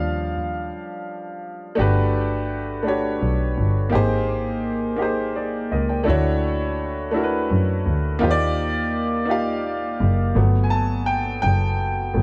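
A bowed double bass sits up front in this slow R&B piece in 6/8 at 56 BPM. It is played by a single player sul tasto, with an airy bow, soft attack and light vibrato, giving a rich, intimate tone in its low register. A clear grand piano, also up front, carries the accompaniment with an open, slightly worn sound and long sustain. The harmony drifts through lush major-ninth chords, opening on Ebmaj9, moving to Gmaj9 at 1.8 seconds, and passing through Abmaj9 and Dmaj9 before returning to Ebmaj9 and settling on Gmaj9 at 10.3 seconds. Light reverb and a small-room ambience frame a dark, warm production, and the tender mood suits this passage, which is cut from a longer piece.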